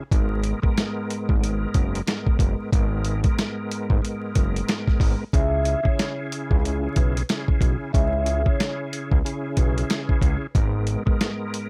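Dry and dusted with vinyl crackle, this gritty, tough boom-bap hip-hop excerpt swings at 92 BPM in C# dorian: a compressed sampler-style kit with a thumpy kick, medium-tuned snare and hi-hat sits up front beside a fat, detuned sawtooth bass with ring modulation and a filter pluck, while a reedy, lightly overdriven tonewheel organ with key click and slow rotary speaker moves from G#madd9 to C#m, and a mellow soft-mallet vibraphone with metallic ring, digital delay and a boxy small-room tone carries the melody from 5.3 to 9.7 seconds.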